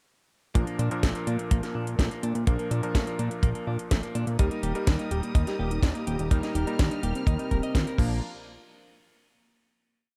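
A dark, warm mix with little reverb opens this sunny, playful italo disco piece at 125 BPM in Bb major, where a tight, up-front four-on-the-floor kick leads a house drum kit of cracking snare, metallic hats and crash. A fat, detuned analog bass drives octave-jumping lines beneath clangy electric grand piano stabs and a clean, direct guitar arpeggio sequence tucked in the background, both carrying digital delay. At 4.4 s a round, chorused synth lead enters with a repeating sixteenth-note riff over a pedal note, alongside a lush, bowed string pad with vintage sampler grit, before the piece closes on a final hit at 8.2 s.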